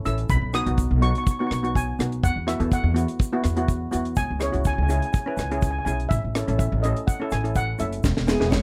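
A sunny, carefree calypso fragment in E major at 124 BPM opens with a mellow, shimmering lead steel pan melody over a bright, up-front second pan, woody gut-string pizzicato upright bass, a dry, tight deep reggae kit with high-tuned snare and rim clicks, and a grainy shaker in the background, moving through B, Esus2, C#m and A before a drum fill at 8.0 seconds and a forceful, scooped alto saxophone line slipping in at 8.3 seconds, all set in a dark production with light reverb.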